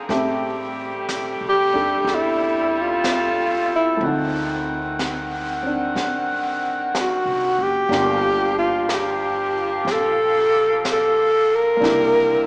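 A breathy, close-miked alto saxophone carries the melody up front from 1.5 seconds, its whispered tone shaped by vibrato, soft attacks and scooped notes in this intimate, late-night jazz ballad at 61 BPM with a swung feel. Beneath it, a warm grand piano with short sustain and a bright, vintage saxophone section holding tight sustained chords share the harmony over Am7, D7b9, Gm9 and C9, while a woody, growly pizzicato upright bass and a brushed drum kit with a high-tuned snare and hi-hat sit lower in the mix. A moderate cathedral reverb gives the fragment the sound of a church or concert hall, heard through a small speaker.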